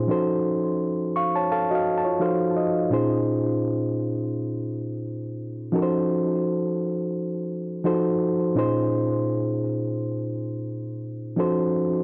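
R&B in a sultry, smooth Bb minor at 85 BPM with a light sixteenth-note swing and tuning at A4 = 438 Hz, this short cut from a longer piece features a solo reed electric piano, reedy and lightly overdriven through its built-in speakers and placed up front with cassette tape color and analog delay; it plays a fill from 0.8 to 2.9 seconds before settling at 2.9 seconds into a passage that moves between F7b9b13, F7b9 and Bbm11 chords, all captured as a home cassette recording in a booth with moderate ambience.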